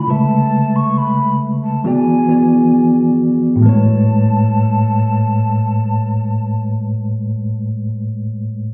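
Dreamy and tender, this R&B fragment, cut from a longer piece, drifts at a slow 68 BPM in a straight 4/4, in A major and tuned slightly under standard to A4 = 439 Hz. A bell-like tine electric piano sits up front as the accompaniment, bright and clean with the boxed colour of built-in speakers, ranging from A2 up to E5 and carrying the harmony through Amaj7/C#, E7 and back to Amaj7. Above it, a breathy, hollow jazz flute with a metallic edge sings the melody high in its register, between G#5 and C#6, its soft attack, vibrato and lifted highs trailed by a delay. The flute sits well behind the piano in the mix and falls away at 6.6 seconds, while the piano carries on alone until 8.7 seconds. The whole track sounds muffled, as if heard through a wall, set in a stone room's reverb that lends it a distant, veiled quality.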